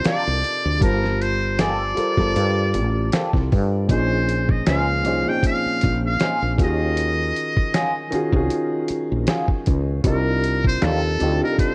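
Introspective and smooth, this short cut from a longer R&B and neo-soul piece moves at an unhurried 78 BPM with a gentle sixteenth-note swing. A metal-muted trumpet carries the melody up front, its tone buzzy, thin and brilliant with light vibrato, yet set at a roomy distance in a jazz-style solo voice. A grand piano with an intimate, boxy character and audible action noise supplies long-sustained accompaniment through minor eleventh chords, moving from Cm11 through Gm11, Bbm11 and Ebm11 before returning to Cm11 at 10.0 seconds. Underneath, a woody fretless electric bass sits forward with a growly, round, hollow-body voice, while a gritty, compressed sampler-style drum kit pairs a thumpy kick with a medium-tuned snare and hi-hat. An electric guitar through a small old amp adds a twangy, slightly broken-up second line with wah, entering at 0.1 seconds. The whole mix is dry, carrying very little reverb, and wrapped in worn cassette tape with a warbling pitch drift that gives it a faded, lo-fi patina.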